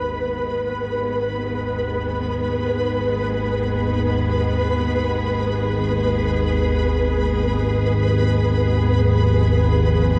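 In free time, this dark, unsettling ambient drone excerpt in G# dorian, tuned to A4 = 439 Hz, opens with an up-front, organ-like drone of detuned sine and triangle tones in the low register, thickened by ensemble chorus and fading in over the full 10.2 seconds. A distant, woody studio cello section holds bowed chords with vibrato, fading in alongside it, while a flickering, grainy granular texture hovers high on B4. The harmony moves from G#m to a rootless C# at 8.9 seconds, all steeped in a cavernous cathedral reverb, in this fragment cut from a longer piece.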